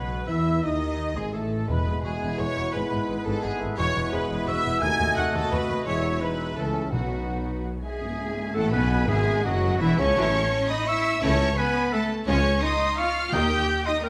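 A wet recital-hall reverb surrounds this spirited, cheerful passage of fast romantic symphonic music in triple time, cut from a longer piece. Bowed violins with vibrato carry the expressive melody. Airy silver flute, a distant, roomy clarinet and a second violin section add a second line. Beneath them a rich, very quiet viola section and a mellow bassoon play the accompaniment, with the bassoon dropping out at 7.8 seconds. Trombones and French horns hold sustained chords, and a clear trumpet section adds stabs in the background, while tuba, cellos and double basses anchor the bass. Round calf-head timpani on soft mallets mark the phrases, a dark cymbal swell and tam-tam enter at 5.9 seconds, and a full-band accent at 8.0 seconds opens a new section.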